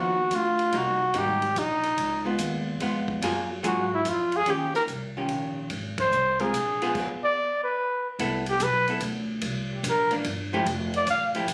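Captured on a phone in a club, with moderate reverb and compression, this sophisticated, swinging small-group jazz waltz features a breathy, mellow trumpet with light vibrato carrying the melody up front over a clean, picked hollow-body archtop guitar, a woody pizzicato upright bass, and a dry cocktail drum kit with dark cymbals, a high-tuned snare and a punchy kick that enters at 0.3 seconds, the band hitting an accent at 5.9 seconds before a new section begins at 8.2 seconds.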